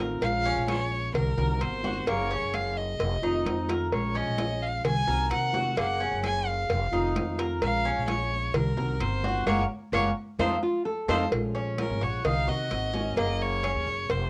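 Cuban son and guajira with a sultry feel, this excerpt from a longer piece sets a bright, intense bowed violin with vibrato up front over a woody, thumpy pizzicato upright bass on gut strings, while a fingerpicked steel-string acoustic guitar and a metallic, double-strung tres with picked arpeggios fill in the cassette-tinged backdrop. Percussion drives the groove: a tight, dry, high-tuned cowbell, ringing high-tuned hard-hand congas in the background and very quiet woody claves. The band hits an accent from 9.5 s, and a fresh-stringed, full-bodied nylon-string guitar with finger squeak briefly steps forward alongside a drum fill at 10.6 s, all in a home recording with moderate reverb.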